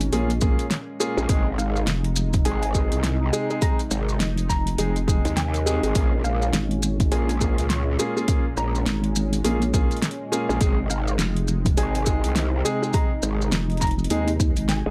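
A dry mix carries this swaggering, playful glitch hop excerpt, where a punchy electronic kick and a pop kit with fat snare, metallic hi-hats and rim clicks set a swung groove under a nasal vowel-sweep wobble bass and, from 1.2 s, an aggressive growl bass, while a warm grand piano adds pumping, delayed stabs, grainy maracas sit close, a smooth detuned analog pad with vintage 12-bit grit hovers in the background, and a woody wave-folded pluck melody enters at 1.6 s through lush chorus.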